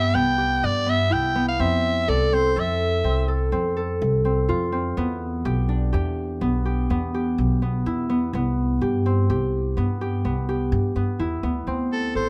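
A raspy, gritty soprano saxophone with vibrato and scooped notes sings a brief melody in the first 3.3 seconds and returns near the close at 11.9 seconds, while a ringing, fingerpicked concert harp plays arpeggios and a woody, growly pizzicato upright bass holds down the low end in this pensive, hypnotic chamber piece at 125 BPM in 7/4, moving through Cmaj7, Fmaj7 and Em7 in light reverb.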